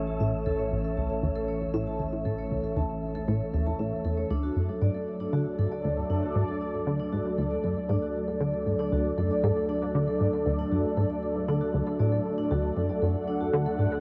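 Ambient, sequencer-driven space music with a luminous, cosmic mood, moving in a straight 4/4 as a punchy, funky analog bass riff with a filter pluck sits up front alongside a sweeping resonant pad with chorus and a dark, ringing vibraphone playing arpeggios through tape echo. A deep, round sub bass sits in the background beneath an airy, wind-like noise texture that ends at 4.3 s, when the harmony shifts from A to D. The whole is bathed in a huge ambient reverb and the warbling pitch drift of worn cassette tape, in this section cut from a longer piece.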